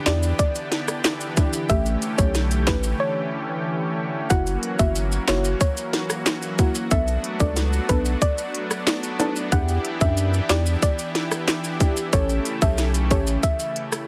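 Dancehall at 92 BPM in a straight 4/4, bouncy and sultry, taken from a longer piece and moving through Em7, A7, F#7 and Bm7 before circling back. An electronic island pop drum kit sits up front with a tight kick, sharp snare, smooth hats, handclaps and rim clicks, all pushed through overdrive, while bright acoustic maracas and timbales played with soft hands add a small-room sparkle further back. A thick, saturated sub bass with a fast attack anchors the low end, and a deep, mellow chord stab with detuned layers and a filter sweep fills the middle under chorus and sidechain pumping. Above it, a soft, round pluck carries the melody with a dark, gentle tone, chorus and tape echo, and a lush, warbling unison pad holds sustained chords with a vintage, bright shimmer and the same pumping motion. A break falls between 3.0 and 4.3 seconds, and the whole mix carries light reverb and a heavily compressed, radio-like finish.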